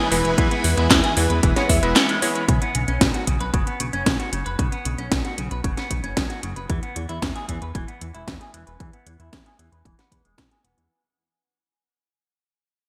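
Up-front house drums with a cracking snare, metallic hats and handclaps drive this sunny, danceable italo disco excerpt at 114 BPM in E major, alongside a punchy electronic kick, a glossy, nasal chorused synth bass and clean, picked semi-hollow guitar arpeggios with spring reverb and delay that take a filter sweep as the track fades out from 2.5 seconds, while clear electric grand piano stabs with a clangy low end and a swirling phased string machine in the background sound only until 2.4 seconds, within a lush hall and a bright 1980s-style digital production.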